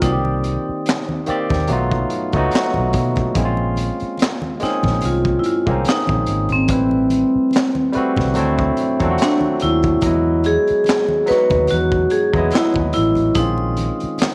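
A bright, airy vibraphone, played with medium hard mallets and its motor off, carries the melody over a barky, lightly overdriven tine electric piano, a round, foam-muted vintage bass and a crunchy breakbeat kit with a high-tuned snare, punchy kick, hi-hat and handclaps, while low-tuned congas enter very quietly and dry at 0.2 seconds. This soulful neo-soul R&B cut moves at 72 BPM in 4/4 with a gentle 16th-note swing, passing through chords such as Cm7, Bbm9, Emaj9 and Bbm11. The piano sits up front, the saturated, gritty drums have a dark, rolled-off top, and light reverb lends the mix a small-room ambience.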